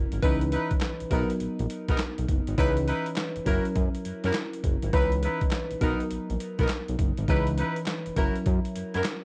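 Swung sixteenths drive this punchy, slick new jack swing cut, where a gritty, pitched-down sampler-style drum kit with thumpy kick, medium-tuned snare, hi-hat and handclaps sits up front with a cassette tape tint, a fat, saturated analog bass with ring modulation and a filter sweep holds the low end, a glassy, bell-like FM electric piano treated with chorus, phaser and cassette tape carries the minor-ninth and major-seventh chords, and a bright horn section with light vibrato adds jazz-style stabs through tape echo, inside a digital ambience that sounds like a home cassette recording.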